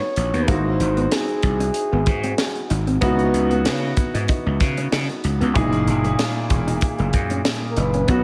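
A breathy, whispered flugelhorn melody with slapback echo opens over clear baby grand piano in lush chorus and a dark, very quiet clean electric guitar riff, joined at 0.2 seconds by a growly overdriven slap bass and a tight funk drum kit with a high-tuned snare, in this bittersweet, urban 1980s jazz-funk pop excerpt at 95 BPM with a lightly swung 4/4 feel, moving through G#7b13, C#m11 and F#13 in a concert hall reverb that lends a big arena sound, the flugelhorn dropping out at 2.7 seconds and returning at 7.7 seconds.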